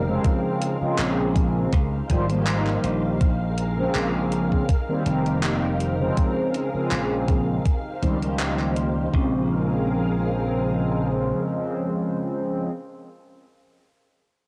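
A hazy home-cassette sound with light digital ambience wraps this woozy, melancholic vaporwave excerpt, cut from a longer piece, which moves with a gentle swing. Dark, detuned synth brass with lush chorus and analog delay sits up front over silky, warbling string-machine chords softened by ensemble chorus and 12-bit sampler grit, while a bright, punchy slap bass under a filter sweep plays until 11.3 seconds. A thumpy, tape-warm electronic kick and gated drum-machine handclaps and hi-hat, re-recorded in a large room, enter at 0.2 seconds and fall away near 9 seconds as a brief closing section begins.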